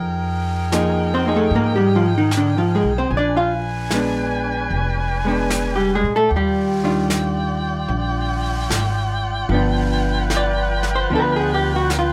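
A wistful, intimate jazz ballad with a gentle swing, this short excerpt from a longer piece moves through Fm11, Bb7b9, Ebmaj9 and G7. A bright saxophone section holds sustained chords with vibrato from the opening, while a woody, up-front upright bass plays pizzicato beneath. At 0.7 seconds a dark, clean hollow-body electric jazz guitar enters with picked accompaniment, placed close and prominent. A brush drum kit arrives at the same moment, its brushed snare and hi-hat kept soft and low in the balance. A moderate club reverb gives the ensemble a snug, late-night sense of space.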